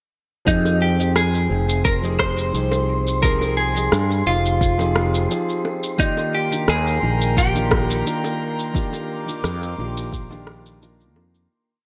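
Sunset chillout with a smooth, wistful mood, built on a light lounge groove of deep, tape-warm electronic kick, overdriven shaker and rim click with gated reverb, and tight, high-tuned bongos in the background. An up-front semi-hollow electric guitar carries a motif-based melody roughened by vintage sampler grit and delay, over dotted-rhythm chords from a dark, mellow baby grand and long gliding notes from a growly fretless bass with tube saturation and lush chorus. A wind-like tuned noise texture holds a high note from 1.1 seconds, a breathy chorused pad adds sustained chords from 6.5 seconds, and the piece fades out from 7.8 seconds in a bright 1980s-style digital production with plate reverb.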